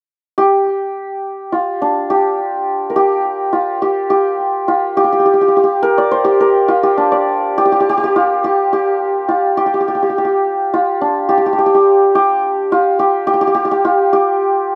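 An outdoor recording with light reverb and a dry, open feel frames this short passage cut from a longer Indian classical piece. A solo santur sits up front from 0.4 to 14.8 seconds, its hammered strings sounding mellow and shimmering between D4 and D5, with a slapback echo trailing each ringing note. The mood is introspective and meditative, the playing moving at 105 BPM in a straight four.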